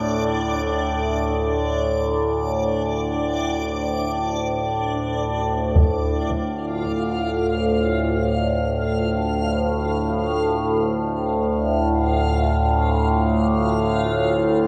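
Unfolding in free time, this ominous, cavernous dark ambient drone piece rests on an up-front, resonant sawtooth drone with moving overtones, chorus and phaser, beneath a reversed, dreamy granular texture of bright triangle tones and a very quiet, detuned sub-octave pad that holds sustained chords until 5.8 seconds, when a heavy-sticked taiko ensemble sounds briefly through a low-pass filter and tape echo, the whole mix steeped in wet spring reverb with an echo-heavy cassette-tape character.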